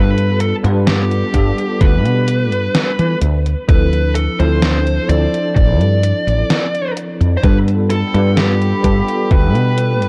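A slow, straight 4/4 pulse at 64 BPM sets a melancholic, woozy vaporwave mood in this short cut from a longer piece. A gated 80s digital drum machine enters at 0.2 seconds with hi-hat and an overdriven snare carrying gated reverb, sounding re-recorded in a small room. A thumpy electronic kick sits up front from 1.3 seconds. Beneath them, a woody fretless electric bass gives a round, punchy, hollow-body low end, while a bell-like tine electric piano adds bright, clean accompaniment through an ensemble chorus. A dark, smooth lead guitar carries the melody with overdrive, vintage 12-bit sampler grit and tape echo, over chords moving from G9 to Dm9 and back to G9. At 7.4 seconds a warbly, nostalgic tape-like pad fades in with a slow attack, mellow and lo-fi in its chorus and reverb, and the whole mix carries a cassette-tape character with light digital ambience.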